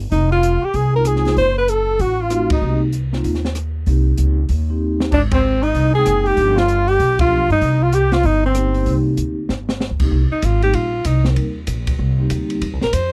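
A dry, close 1970s-style studio sound frames this cool, swinging cut from a longer small-group swing and bop piece in C minor, moving at 192 BPM with a swing feel. A woody, thumpy pizzicato upright bass sits up front beside an acoustic kit with dark cymbals, a high-tuned snare and a boomy kick, while a mellow, vintage vibraphone played with soft mallets rings underneath with slow motor vibrato. A clear, close-miked alto saxophone carries the melody over a raspy, growling trumpet set back in the distance; after a band accent and a drum fill, the horns return at 5.1 seconds, the trumpet drops out at 9.0 seconds, and the alto takes a solo from 10.1 seconds.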